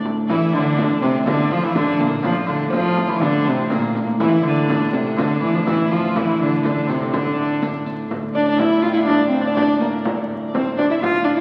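A rich, airy viola da gamba carries the melody up front, with a distant, biting fiddle on a second line and a background pipe organ drone of chiffing flute stops, opening this driving, mysterious medieval dance in D minor at 123 BPM in 2/4. A warm frame drum and a delicate, fingerpicked lute on double gut strings join almost at once, while a very quiet riq adds close, jingling brightness until 8.1 s, when the music moves into a new section. The whole excerpt is bathed in wet church reverb and the crackle of a very old 78 rpm record, cut from a longer piece.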